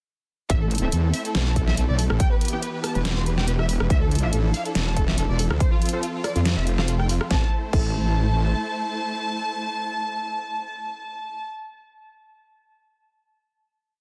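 A heavy, saturated wobble bass sits up front in this aggressive, menacing piece of half-time dubstep, its detuned sawtooth and sine phrases modulated at changing wobble speeds and roughened by chorus and overdrive. Alongside it, a punchy overdriven electronic kick and a layered dubstep kit with a deep snare, rim clicks, hi-hats and crash drive a swung beat through the drop, which runs to 7.3 seconds over a minor progression. Above, a soft-attack studio violin section bowed sul tasto floats a pure, smooth repeating sixteenth-note riff over a pedal note, trailed by dub echo. A lush, full-bodied supersaw pad holds sustained chords in the background with sidechain pumping, while sparse, bright orchestra-hit-like synth stabs in close voicing ring out through their own reverb. The drums drop away at 7.9 seconds and the bass soon after, leaving the violins, pad and stabs to carry the final chord in a dense, heavily limited modern mix.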